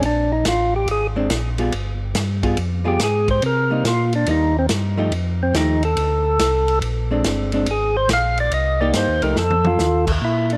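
A percussive tonewheel organ carries the melody and solos through this short, greasy soul jazz organ trio excerpt, its fat, lightly overdriven tone marked by third-harmonic percussion, key click, a slow rotary speaker and tape echo. Beneath it, a second tonewheel organ holds down the bass with a mellow, round, dark and clean sound, also turning on a slow rotary speaker with vibrato and key click, and both organs sit up front. A soul drum kit swings the bluesy 4/4 groove from a distant, roomy booth, with dark cymbals, a medium-tuned snare and a tight kick, and it plays a short fill at 9.4 seconds. An archtop guitar, electric and hollow-bodied with a clean, picked tone, joins as accompaniment at 1.2 seconds and stops at 9.4 seconds. Light reverb ties the trio together as the chords move from Bb7 through G7b9, Cm7, F9, Bb9 and Cm7 again before landing on F7.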